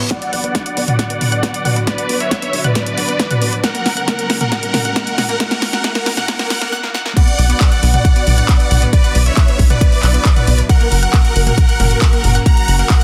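Dense, heavily limited and lightly reverberant, this soaring, euphoric uplifting trance excerpt at 136 BPM in B minor builds with a filter sweep, a drum fill, and a very quiet reverse cymbal and riser that end at 6.7 s, then drops at 7.2 s, where a very quiet, catchy plucky unison lead with vibrato enters over huge, detuned supersaw chords carrying the melody with ensemble chorus, pumping and dub echo, a thick, slow-attack unison pad and a round analog pluck arpeggio in the background, a dark, driving sequencer bass, a punchy, up-front layered electronic kick, and an overdriven analog drum machine of punchy snare, handclaps, hi-hat, toms and crash cymbal.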